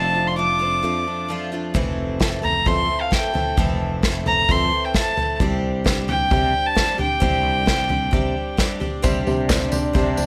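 Indie folk at 132 BPM with an anthemic, nostalgic build, led by a reedy, gut-toned bowed fiddle over a fingerpicked steel-string acoustic guitar that stops at 3.6 seconds, a shimmering octave-doubled twelve-string and a growly fretless electric bass, with an up-front unplugged drum kit played with bundle sticks entering at 1.7 seconds. At 9.0 seconds a smooth-topped French horn with light vibrato, a woody upright piano in the background and a jingly tambourine join, followed at 9.5 seconds by a brief, crisp group handclap, all in light reverb.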